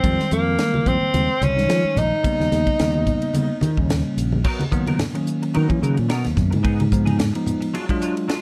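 Electric jazz fusion at 109 BPM in 4/4 with a light sixteenth-note swing, this short cut from a longer piece feels intense and nocturnal, settling into G# minor from 4.4 s. A clear tenor saxophone leads with vibrato, soft attacks and scooped notes, sounding distant and roomy with plate reverb and tape echo, yet sitting up front before it drops out at 3.9 s. A bell-like tine electric piano with a bright, clean tone carries the harmony throughout, over a tight funk drum kit with a high-tuned snare, a tight kick, hi-hat, ride and crash, and low-tuned congas with thick skins and hard hands that sit in the background. The fingered electric bass, direct and amped, takes a solo from 4.4 s, while a semi-hollow electric guitar adds compressed, picked stabs treated with ensemble chorus and plate reverb. The chords move from Fm9 and Eb7b13 to a rootless G#m9, Fm7b5 and Ddim, all framed by a dark production with light reverb.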